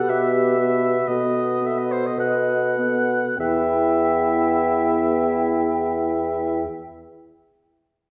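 This is a slow romantic classical movement for wind quintet, elegiac and yearning, with a rubato feel that slows over the opening 3.4 seconds, cut from a longer piece. A hollow, pure-toned concert flute carries the melody with vibrato and lifted highs. A close-miked oboe sits up front on the second line with light vibrato. Beneath them, a horn with a smooth top holds a steady accompanying note, while a clarinet, placed distant in the background, fills out the harmony. A mellow, soft-attacked bassoon enters at 0.1 s, prominent in the balance as it anchors the bass. The ensemble is heard from further back on a wet scoring stage, its harmony moving from E minor over B through a bare B chord before settling on E minor as a new section begins at 3.4 s.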